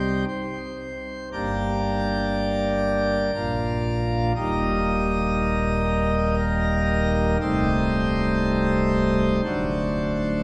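A full, brilliant pipe organ plenum with mixtures and romantic voicing plays alone and up front in this dark, grave classical chorale-style fragment in a rubato 3/4, moving from Cm through Gm, Bb and Eb to Am7b5/C and D7 within a cathedral's long 4.5-second reverb.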